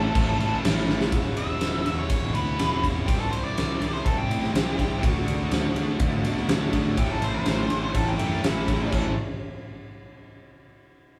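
Confident and swaggering, this short classic rock excerpt in A major moves at 123 BPM in a straight 4/4, cut from a longer piece. An octave-fuzz lead guitar with a dark, distorted tone carries the melody between E4 and E5, taking a solo from 1.1 to 8.9 seconds over chords that move from A through E, C and D before returning to A. Beneath it, a double-tracked overdriven electric guitar plays a picked riff, joined by a raw garage guitar that sits in the background and drops out at 1.1 seconds before returning at 5.0 seconds. A growling fingered bass, bright and amped with overdrive, anchors the low end down to E1. The huge arena drum kit sits up front with a punchy kick, fat snare and bright cymbals, announcing the solo with a fill at 0.9 seconds, while a moderate stone room reverb gives the whole band the feel of playing live together in one space.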